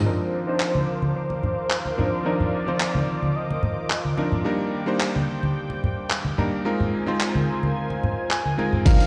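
A straight 4/4 nu-disco groove at 109 BPM in C minor sets a groovy, cosmic mood in this short cut from a longer piece. A gritty, compressed sampler-style kit brings crash cymbal, handclaps, hi-hat and tambourine from 0.6 s, joined by low-tuned, thick-skinned congas sitting close and up front. A clear, vintage electric grand piano with a clangy low end carries the accompaniment through a low-pass filter sweep and analog delay. Alongside it, a lush, detuned sawtooth pad warbles under chorus and sidechain pumping across Cm11, Ebmaj7 and Ab69. A bold, wave-folded unison lead with ring modulation, vibrato and tape echo sings the melody up to Ab5, drops out at 4.2 s and returns near the close. A fingered electric bass sits in the background, sounding at the start and again at 8.9 s beside an overdriven, knocking electronic kick, the whole mix bathed in plate reverb and a bare stone room's ambience.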